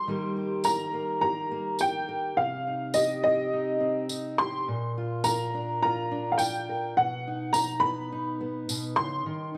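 The recording sits in a moderate echo-chamber reverb that gives this short excerpt a soft halo. It is a peaceful acoustic folk piece for a duo or small band, moving at an easy, straight pulse in four. Up front, a dark upright piano carries the melody in its high register, and its tone is mellow, worn and woody, slightly detuned and boxy. Its short sustain and audible action noise make it feel intimate. Beside it, a fingerpicked steel-string acoustic guitar with an auditorium body supplies the accompaniment, ranging from low bass notes into the middle register. A close, dry, jingly tambourine joins at 0.6 seconds and drops out at 8.8 seconds, while the harmony moves through Eb, Cm and Bb before shifting to B at 7.0 seconds.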